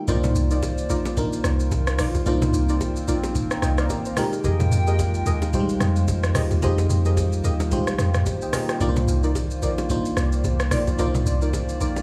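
Close, dry and nearly free of reverb, this short amapiano cut sits in a small room, with a hypnotic, late-night mood at 110 BPM in C minor and a swung sixteenth-note feel. A deep, round log drum bass carries the low end with a fast, percussive attack and dark decay, and it is the loudest part of the mix. A booming analog drum machine supplies a heavy kick, metallic hats, rim clicks, shaker and toms with a tape-tinged character. Hand-played congas and bongos sit in the background. A lush, dreamy FM electric piano with chorus carries the accompaniment over a hollow, flute-like pad that pumps with sidechain. Deep, warbling vintage chord stabs with filter sweeps and digital delay drift over the changes from Cm11 to Fm11 at 4.2 seconds and back to Cm11 at 8.8 seconds, and the drop runs through the whole passage.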